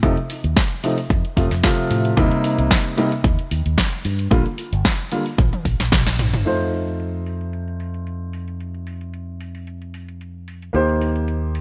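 Groovy and sunny, this short nu-disco excerpt in 4/4 rides a gentle swing on the sixteenths. A dark, mellow grand piano carries the accompaniment up front, its boxy, intimate tone marked by audible action noise, short sustain and an analog delay, moving through F7, Eb6 and Bb5 chords. Beneath it, a fingered electric bass sounds bright and amped, its envelope filter giving each note a punchy bite. A layered house drum kit with a punchy snare sets hi-hat, shaker and toms in studio reverb, with low-pass filtering softening the hats, snare, percussion and toms, while a punchy electronic kick drives the opening until 6.0 seconds. A drum fill from 5.4 seconds and a band accent at 6.1 seconds lead into the second section, all set in a light room reverb.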